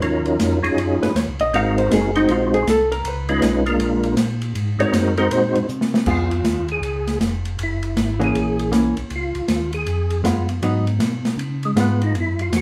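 A hollow-body jazz guitar solo, entering at about one second, leads the first half of this bluesy, swinging soul jazz organ trio excerpt at 158 BPM in 4/4, with a firm swing on the eighth notes. Underneath, a mellow tonewheel organ carries the bass line while an open acoustic drum kit keeps time with ride, hi-hat, snare, a boomy kick and dark cymbals, its sound airy and polished. The picked guitar has a dark, clean, compressed electric tone, moving through changes that start on Ebm7 and pass through Ab7, Db7 and Bb7. A drum fill at 5.7 seconds hands off to a tonewheel organ solo at 6.1 seconds, its percussive, round voice colored by third-harmonic percussion, chorus vibrato and a slow rotary speaker, sitting up front over chords that move from Db7 to Gb7 and Abm7. The whole band is heard from further back in a club, wrapped in a short, wet reverb.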